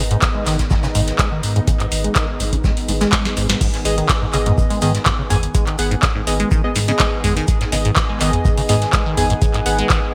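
Trippy and gritty, this acid house piece at 124 BPM in G# minor rides a squelchy, resonant sawtooth acid bass riff with phaser, tube saturation and delay over a round sine sub bass and an up-front deep electronic kick, while a booming analog drum machine with crisp snare, metallic hats, handclaps, toms and crash in gated reverb sits beside a muffled, lo-fi vintage kit with shaker. In the background, a lush, detuned unison pad holds sustained chords while a moody, evolving ambient pad with chorus adds texture, both pumping to the sidechain. A drum fill at 3.1 seconds leads into the drop at 3.6 seconds, where soft, mellow chord stabs with chorus and delay join at 3.9 seconds in a bright 1980s-style digital production.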